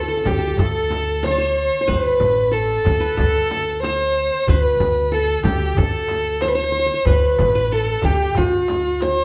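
A straight 4/4 pulse at 92 BPM drives this passionate, festive Arabic maqam ensemble piece in D maqam rast, a 9.2-second section cut from a longer performance. A single bowed violin carries the melody up front, its tone smooth and even with a singing vibrato, heard close and warm. Beneath it, the qanun plays a second line, its triple strings plucked with fingerpicks for a bright, sharp-edged shimmer, while the upright bass anchors the low end with woody, thumpy pizzicato on gut strings. The metal-shell darbuka joins at 0.1 seconds, crisp and deep but sitting very quietly in the mix, and the frame drum follows at 0.3 seconds, struck with hard hands and kept close and dry in the background. The band plays live together in one large studio, wrapped in a moderate reverb that gives the ensemble a lively shared space.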